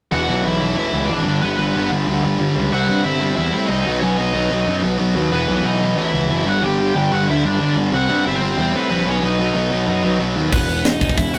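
Punk rock at 185 BPM with a rebellious, rowdy mood. An overdriven lead guitar sits up front with a bright, picked melody over two distorted guitar riffs: a sludgy one in the background and a tight, picked one that drops out at 10.5 s. A growly fuzz bass drives up front alongside them through an E, G, C, B progression, and a tight metal drum kit with a high-tuned snare and bright cymbals bursts in only at 10.5 s before the cut at 11.4 s, all in a rough rehearsal-room sound with tube saturation and moderate reverb.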